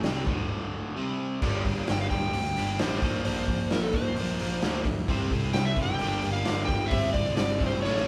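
An up-front, raw garage drum kit drives this swaggering classic rock passage at 131 BPM in a straight 4/4, with a punchy kick, a medium-tuned snare, hi-hat and crash cymbal in a dark, rolled-off sound. Two picked, overdriven electric guitars play riffs throughout: a cranked stack guitar sitting further back and a crunchy one reaching higher, both with a bright edge. A fuzz-laden, growly picked bass sits underneath in the background, and a break arrives from 0.5 to 1.4 seconds before the main groove settles in over Gm, Bbadd9 and C. At 1.9 seconds a warm, overdriven slide guitar takes the melody in a high register. A very quiet, reedy, clean electric piano adds accompaniment from 5.1 seconds, and a drum fill closes this excerpt. The whole band sounds as if playing live together in one large studio, with a moderate reverb giving it an open, roomy feel.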